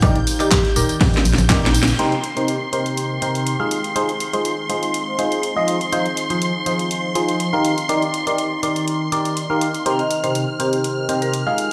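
A lush hall reverb and a touch of small-room ambience surround this energetic, soulful piano house excerpt at 122 BPM in C minor, with a light 16th-note swing. Up front, a biting, barking FM electric piano plays a riff through the whole clip, its noisy attack treated with phaser, dub echo and sidechain pumping. Shimmering vintage string-machine violins hold high sustained chords with ensemble chorus, while a deep, moody ambient pad sits in the background with its own chorus and reverb, both pumping to the beat through a progression that moves from Ebmaj7 through Cm7, Ab6 and Fm7. The opening section, up to 2.0 s, is the busiest: a punchy analog kick, a hollow, organ-like FM bass, a very quiet, airy acoustic kit, and bright, dry tambourine and congas all play there, ending with a drum fill and a band accent. The layered garage kit, with its cracking snare and handclaps, carries on throughout, and a woody, rosewood marimba adds brief echoing melody fragments in the background at 0.4 s and 10.0 s.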